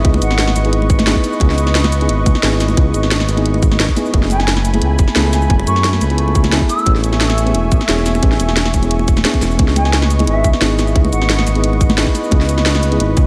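A mellow FM electric piano with a round, warbling tone and diffuse delay opens this rolling, melancholic liquid drum and bass passage at 176 BPM in C# minor, over a detuned analog pad that pumps against the beat, a smooth, up-front synth bass, and an overdriven kit of tight electronic kick, cracking snare, hi-hat and cabasa, with very quiet, dry congas entering at 0.1 seconds. A distant, hollow silver concert flute with vibrato drifts in the background in short phrases, such as at 4.3 and 9.8 seconds, its line trailing into ambient delay. The chords move from C#m9 through F#m11 and Amaj7 back to C#m9, and the whole dreamy mix is soaked in lush hall reverb in this cut from a longer piece.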